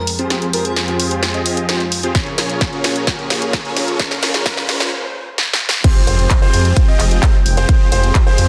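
A punchy, layered electronic kick drives this euphoric, anthemic festival progressive house clip. It arrives at 2.1 seconds in a build-up where huge, detuned supersaw chords and a lush unison pad pump against the beat under filter sweeps, with a brief airy lead at the start, snare fills, claps, hi-hats and crash from the big-room kit, and a very quiet riser and impact. At the drop at 5.8 seconds a warm grand piano with audible action noise plays delayed arpeggios, and a thick, menacing, tube-saturated detuned saw bass enters at 6.1 seconds, all within a dense, heavily limited mix.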